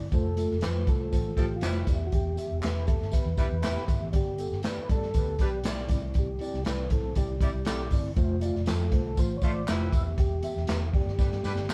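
Uplifting and warm, this short cut from an uptempo 1960s-style soul tune moves at 119 BPM in a straight 4/4, cycling through F, Em, G and Cadd9. A lightly overdriven tonewheel organ carries the melody with chorus vibrato, key click and a slow rotary speaker. Beneath it sit a clean tine electric piano heard through its built-in speakers, a dark, foam-muted fingered bass with a round, amped tone, and an up-front big-band drum kit with a punchy kick and a medium-tuned snare that closes on a fill at 11.2 s. A tight, jazz-style horn section with light vibrato and a smooth top enters at 1.1 s as a second line, while tambourine, egg shaker and group handclaps add small-room sparkle, all captured as a band playing live in one room on cassette with moderate studio reverb.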